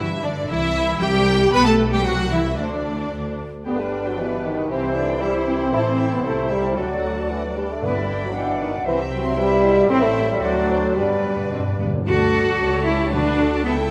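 A cheerful, spirited classical-period orchestral movement in G major at 115 BPM in a flexible 2/4 opens with lush bowed violins carrying the melody over a distant second violin line, smooth-topped violas, focused cellos, soft-attacked double basses and a hard-mallet timpani stroke, then at 3.7 seconds an up-front French horn section adds sustained chords while an airy flute ensemble, a dark, very quiet clarinet and a mellow, vintage-toned bassoon join in, before a timpani fill at 11.0 seconds leads into a brief new section, all set in a reverberant concert hall.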